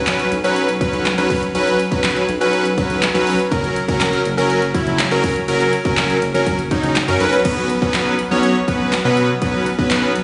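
A bold, detuned sawtooth polysynth with sidechain pumping opens this upbeat, carefree dance-pop clip at 122 BPM over a deep, round analog bass that pumps beneath it and a punchy, layered house drum kit of kick, snare, handclaps, hi-hat and crash, moving from Bsus2 to F# and back under light digital ambience and a slightly dull, room-captured sound.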